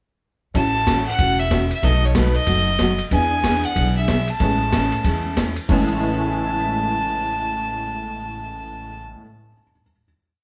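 Western swing country with a playful, down-home lilt: a clear, close fiddle carries a motif-based melody with light vibrato over jangly, detuned honky-tonk piano comping, a woody pizzicato upright bass playing a two-beat root and fifth, four-to-the-bar picked acoustic guitar with finger squeak set in the background, and a gritty sampler-style drum kit with a thumpy kick, high-tuned snare backbeat and ride pattern, all playing live in a stone room before settling onto a final chord at 5.7 seconds.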